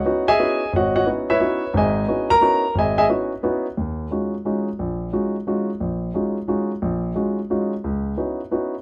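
A warm grand piano plays alone, its short-sustained notes placed up front and reaching from deep bass to the upper register in a searching, hypnotic jazz waltz with a swung lilt. The harmony drifts from Dbm11 to Ebm11 at 3.8 seconds before returning to Dbm11 at 7.8 seconds. A moderate club reverb gives the piano a modest sense of room in this brief fragment from a longer piece.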